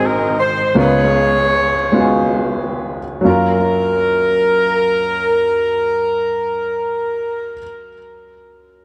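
A jazz-style horn section carries the melody up front, its ensemble voicing warm and present, colored by tape echo. This soulful, uplifting gospel fragment, cut from a longer piece, moves in a slow 6/8 at roughly 42-56 BPM counted in dotted quarters, in F# major, and it slows down over the opening 3.3 seconds. A baby grand piano accompanies close beside the horns, an intimate, natural sound with audible action noise and short sustain, also treated with tape echo. The harmony moves from G#7 to C#7 before settling on F#maj7 at 3.3 seconds, where a second section begins. The horns stop at 7.6 seconds, and the piano carries on alone until 8.8 seconds, all within a moderate echo chamber and an echo-heavy mix.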